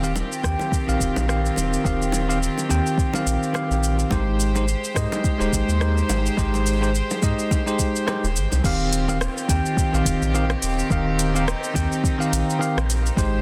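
Sunset chillout with a relaxed, warm mood, moving in a swung 4/4 groove and cut from a longer piece. A bell-like tine electric piano sits up front, bright and clean through a digital delay, while a clear studio string section holds pure, floating bowed chords beneath it. A deep, round sine sub bass anchors the low end, and an electronic kick drum enters at 0.4 seconds alongside a smooth R&B kit of crash, hi-hat, rim click and shaker, the snare gently soft-clipped and both drum parts tape-tinged and re-recorded in a large room. Low-tuned acoustic bongos add a very quiet presence until 8.6 seconds, where the harmony moves from Abmaj7 back to Eb69 for the second section. Light reverb and a dense, heavily limited modern master give the mix a polished finish.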